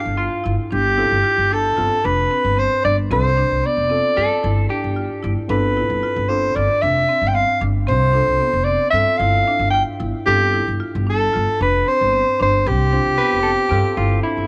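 This progressive instrumental piece in 9/8 feels intricate and bright, and it is cut from a longer work that opens on a G7sus4 chord. A mellow soprano saxophone carries the melody up front in a jazz style, its tone distant and roomy as it plays solo over the ensemble. Beneath it, an upright bass plucked pizzicato gives a woody, dark foundation close to the listener, while a marimba with medium hard mallets adds smooth, percussive arpeggios from the background. Entering at 1.0 seconds, a barky tine electric piano played clean through a combo amp supplies bright accompaniment behind the other parts. A clean electric guitar, fingered and warm, adds brief second lines in short bursts, returning near 13.2 seconds, all within light reverb and a small room ambience.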